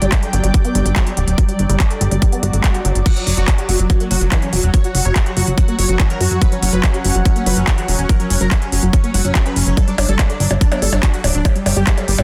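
A bright, pulsing gated texture, a woody, warbling wave-folded pluck riff with delay, a punchy analog bass, a tape-warm techno kit of crash, handclaps, smooth hats and percussion blips, and a cloudy granular pad open this hypnotic, driving psychedelic trance excerpt, joined almost at once by a tight, up-front kick, before a brief electronic swell at 2.4 seconds leads into a huge, detuned supersaw melody with phaser and delay from 3.1 seconds, all within a dense, heavily limited master.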